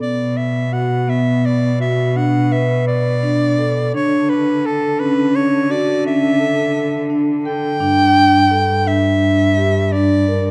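Hopeful yet restless, this contemporary instrumental fragment, cut from a longer piece, moves at 170 BPM counted in eighths through an uneven 11/8 metre with a straight feel. A clear soprano saxophone carries the melody up front, playing in a classical style with a soft attack and vibrato, ranging from A4 to G5. Beneath it, a vibraphone struck with soft mallets and its motor off spins out arpeggios between B3 and B4, its tone metallic, ringing and mellow, close-miked and dry. A muted cello, bowed by one player con sordino, holds the bass from G2 to D3 with a veiled, dark colour, light vibrato and a smooth top. The harmony moves from Bm to Dmaj7sus2 at 3.9 seconds and settles on G5 at 7.8 seconds, all within light reverb and a dark, warm production.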